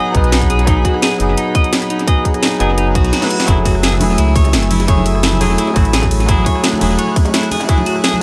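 A bell-like tine electric piano rings up front through this dreamy, lush liquid drum and bass excerpt at 171 BPM in F# dorian, joined by a deep sine-and-triangle sub bass, picked clean electric guitar arpeggios with 12-bit grit and delay, an airy, breathy detuned pad pumping in the background, an overdriven tight kick and kit with cracking snare and bright hats, a reverse cymbal from 2.9 seconds and a drum fill at 3.1 seconds as the kick briefly drops out and the chords move from G#m7 to F#m9, and soft-handed congas and bongos entering at 3.6 seconds, all set in an echo-heavy mix.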